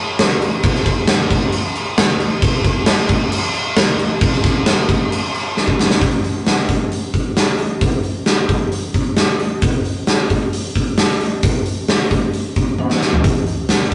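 A big acoustic rock drum kit comes in at 0.2 s, carrying an aggressive, menacing feel at 133 BPM in a straight 4/4. The kit sits up front with a punchy kick, a medium-tuned snare, toms, hi-hat and bright crash cymbals, all sounding as if played in a big room. A drum fill at 5.6 s marks the shift into a new section, and another fill arrives at 12.8 s shortly before the clip breaks off, having been cut from a longer piece. The sound is a rough rehearsal-room recording with a moderate small-room reverb and a warmly saturated character, its top end cut off above 10.5 kHz.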